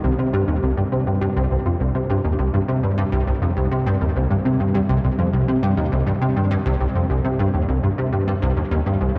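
A plucky analog bass rings out alone in a vast, echoing space, its notes hanging in a cathedral-like reverb that lingers for 5.3 seconds. This short ambient excerpt moves at 102 BPM in a straight 4/4, set in C minor, and the mood is hypnotic and mysterious. The bass sits up front, blending sawtooth and square-wave tones into a punchy, funky voice with a fast attack and a decaying filter pluck. Ensemble chorus and tape echo thicken and repeat its notes, which range from C2 to C3. The single part carries the whole passage from 0.0 to 9.2 seconds.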